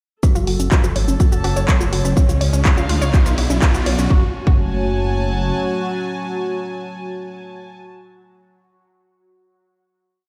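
Melodic techno at 124 BPM in F# harmonic minor, cinematic and hypnotic, builds from 0.2 seconds with a punchy four-on-the-floor kick, rim, shaker, clap and open hat from an analog drum machine, a lush wave-folded unison pluck looping a 12-step arpeggio under a filter sweep, a fat sub-octave lead riff with vibrato and tape echo, a moody ring-modulated pad and floating sul tasto strings, joined at 0.4 seconds by a rumbling detuned saw bass rolling in sixteenths, all moving through F#m, C# and Bm as a background riser climbs from 1.3 seconds. The drum machine stops at 4.1 seconds, kick and pluck drop away at 4.6 seconds, and the lead, pad and strings hold a final F#m chord in stone-room reverb.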